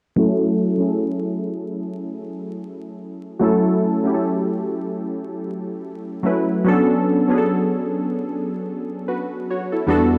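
Analog keys sit up front throughout this short hip hop passage, heard from 0.2 to 10.2 seconds, with a round, full-bodied sawtooth tone that is detuned and thickened by chorus. Each chord strikes with a fast attack and then decays, while a filter sweep runs across the whole passage and a low-pass filter and cassette tape colouring soften the sound. The harmony rests on F#m7 before moving to Bm9/F# at 6.7 seconds, giving the part a nostalgic, reflective mood. The groove moves in 4/4 with a light swing on the sixteenths. A moderate studio reverb surrounds the keys, and a bed of vinyl crackle adds a worn, dusty texture to this fragment of a longer piece.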